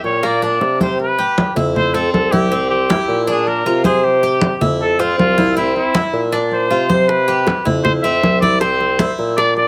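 Danceable and sunny, this short excerpt of Cuban son and guajira moves at 158 BPM in C major, with a breathy, whispered trumpet singing the melody up front over metallic, picked arpeggios on the double-stringed Cuban tres, a mellow bassoon with light vibrato carrying the bass, bright congas played with hard hands throughout, and round, low-tuned bongos sitting in the background until 0.8 seconds and returning at 7.1 seconds, all in a close, detailed sound with light reverb as chords like Bb69, Cmaj7 and F5 turn beneath.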